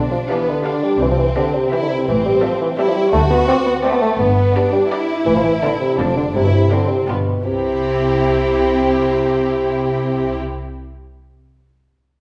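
A dark solo bassoon sits up front, carrying the accompaniment in this quirky, whimsical film cue, a short cut from a longer piece in C major at 167 BPM in 3/4. Bowed string sections surround it: an expressive, close violin section sings the melody from 0.3 s over a focused second violin line, with a background viola section, a smooth, even cello section and a distant double bass section with a soft attack, all the strings playing with vibrato. A wet recital-hall reverb gives the playful chamber sound a spacious, church-like bloom.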